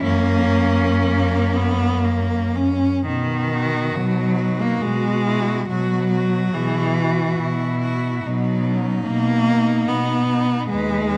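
An up-front bowed cello carries the accompaniment in its middle register, its expressive vibrato and portamento giving this tender, lyrical classical piece for cello ensemble much of its character. Beneath it, a second up-front cello holds the bass line, also with vibrato and sliding portamento, while a focused cello with a smooth top sings the melody from the higher end of the group. Between them, a rich, even cello weaves a second line, adding a smooth inner voice. All four solo players sound throughout, moving in an unhurried triple metre with a flexible, rubato feel. The harmony rests on F# for the opening phrase before settling onto B at 3.1 seconds, and the ensemble is set in a wet recital-hall reverb in this short fragment cut from a longer piece.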